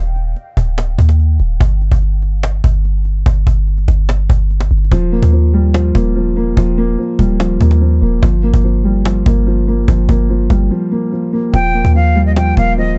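A deep, boomy 808-style bass sits up front from the start of this dreamy, wistful half-time trap excerpt, joined by a woody, close cajon, with a dark, mellow grand piano with audible action noise entering at 4.9 seconds on Ebadd9 and Gm7 chords and an airy, distant flute with vibrato arriving at 11.5 seconds, all within a small room's dark production.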